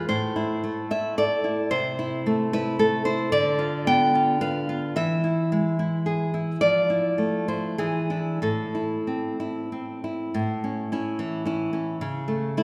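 A fingerpicked nylon-string guitar, up front with audible finger squeak, carries this passionate, melancholic romantic classical fragment in a rubato three-four, moving through A minor harmonies with E7 resolving to Am and brightening into A major at 10.3 s, all bathed in the long, wet reverb of a church or concert hall.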